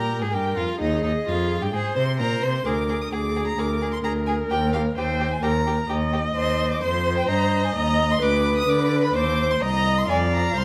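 Heard in a moderate recital-hall reverb, this brief, urgent and restless cut from a quick classical-period string quartet movement at 129 BPM in 4/4 with a rubato feel shifts from Eb major to C minor at 6.4 s, as a rich, somewhat distant first violin carries the high melody over a second violin's line, a clear viola supplies the accompaniment, and an up-front cello anchors the bass, each a single bowed player with focused vibrato.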